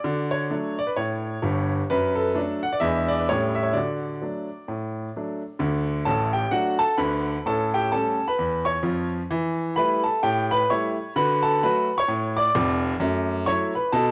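Playful, exuberant stride jazz in D major at 130 BPM with a swung 4/4 feel, this fragment of a longer piece features a single clear, natural grand piano, up front and spanning from deep bass to sparkling treble, heard through the cassette-tape character of a home recording whose highs stop at 10.8 kHz, with light reverb and a small room ambience, as harmonies moving from Dmaj7 through E7 and A7 back to D close on F#m7 near 13.0 seconds.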